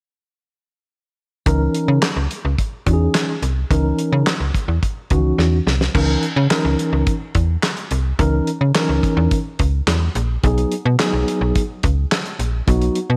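A snappy FM bass with a metallic, digital attack sits up front in this early-eighties boogie funk cut from a longer piece, carrying a late-night, danceable mood at 107 BPM in straight 4/4 and C# dorian. Alongside it, a mellow tine electric piano plays clean accompaniment through its built-in speakers, while a damped 70s drum kit supplies dry, acoustic drums with a fat snare, tight kick, bright cymbals, hi-hat, handclaps and crash. All three parts come in together at 1.5 seconds, opening on a C#m69 chord. A drum fill at 5.4 seconds leads into the second section, where the harmony later moves to B6 at 10.4 seconds. The mix has light reverb and a studio ambience, with each part placed close and present.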